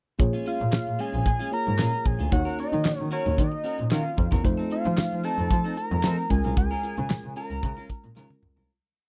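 A fat, dark analog lead with sawtooth bite, a sub octave and chorus carries a motif-based melody of call phrases through this slick, late-night early-eighties boogie funk piece. Beneath it, a bowed double bass plays a rich, syncopated line with chromatic approach notes. A damped 70s kit with a tight kick and a snare layered with handclaps drives a mid-tempo boogie beat, while a worn, slightly out-of-tune tine electric piano holds mellow chords, a clean electric guitar picks choppy sixteenth notes with subtle chorus, and a jingly tambourine marks the backbeat in the background. The dry, close studio sound fades out from 6.6 seconds, ending on a drum fill at 8.2 seconds.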